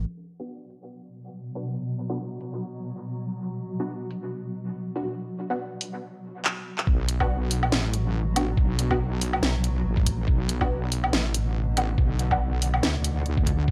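Deep dubstep at 141 BPM in B minor, brooding and dark, with a half-time swung feel and a gritty, cassette-worn sound in a light reverb. Muted, phased dub chord stabs with echo and a garage kit with a cracking, tape-warm snare, handclaps, hi-hat and woodblock open the piece over a blurred, granular cloud pad under a filter sweep, until a drum fill at 6.4 seconds leads into the drop. At 6.9 seconds a heavy, saturated wobble bass, heard only briefly at the very start, returns up front alongside a muffled, thumpy pitched-down kick.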